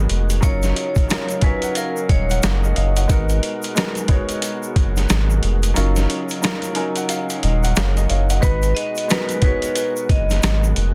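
Boom-bap hip-hop with a reflective, gritty mood and a swung sixteenth-note feel, cut from a longer piece. A compressed, pitched-down sampler-style drum kit sits up front, with a thumpy kick, medium-tuned snare, rim click and hi-hat carrying a large-room character, while a deep, thick, saturated sine sub bass with fast attack and long sustain anchors the low end beside it. A woody upright piano with long sustain plays the accompaniment through a cassette-tape coloring, and a lightly overdriven tonewheel organ with third-harmonic percussion, chorus vibrato and a stopped rotary speaker holds full chords in the background, alongside a grainy, bright egg shaker. A vibraphone struck with hard mallets brings a metallic, ringing yet dark and smooth melody with slow motor vibrato, entering at 0.4 seconds and returning at 8.4 seconds. The kick drops out at 5.8 seconds before coming back, over minor-seventh chords in a dry, dense and heavily limited mix.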